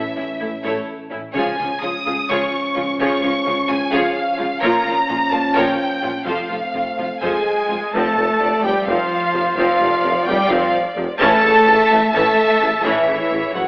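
Triumphant and heroic, this cinematic orchestral passage, cut from a longer piece, moves in an asymmetric 7/8 with a straight feel. A lush, focused violin section carries the melody up front with rich vibrato, while a second violin line, a smooth, even viola section and close-sounding cellos fill out the string body beneath. A distant double bass section anchors the low end, and a tight French horn section holds sustained chords in the background. At 7.2 s a mellow, vintage-toned trumpet section breaks in with stabs, and a roomy tuba joins the bass at 7.9 s, thickening the foundation as the opening material returns. The whole ensemble sits in a wet scoring-stage reverb, yet the sound is filtered to the character of an AM radio broadcast, giving the grand orchestration a vintage cast.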